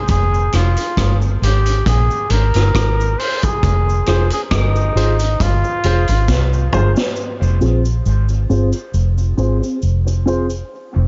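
Meditative and deep, this short dub reggae excerpt in F minor moves at an unhurried 68 BPM in 4/4, with a gentle swing on the sixteenths and a single F minor chord underneath. A warm flugelhorn, touched with vibrato and softened by a low-pass filter and dub echo, carries the melody from the start until 6.7 seconds. Below it, a dark, round, foam-muted electric bass sits up front and runs through the whole passage. A vintage acoustic drum kit with a punchy kick, high-tuned snare, rim clicks, hi-hat and toms plays a fill before dropping out at 7.2 seconds, while a distant cabasa adds faint texture. A woody upright piano with long sustain supplies echoing, filtered stabs, and from 7.6 seconds a dark, clean, compressed electric guitar with analog chorus and dub echo takes up the accompaniment as a filter sweep runs to the end. The whole recording sits in a small room with light reverb and a dulled top end.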